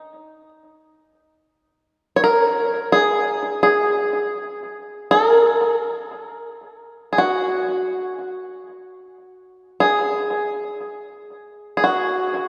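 A fingerpicked bluegrass banjo plays alone and up front for the full 12.5 seconds of this meditative world piece in free time. Its twangy, percussive attack stays in the register from Eb4 to Db5 and carries an analog delay. A lush hall reverb with a 2.6-second tail soaks the dreamy mix, leaving a spacious, haunting mood in a passage cut from a longer piece.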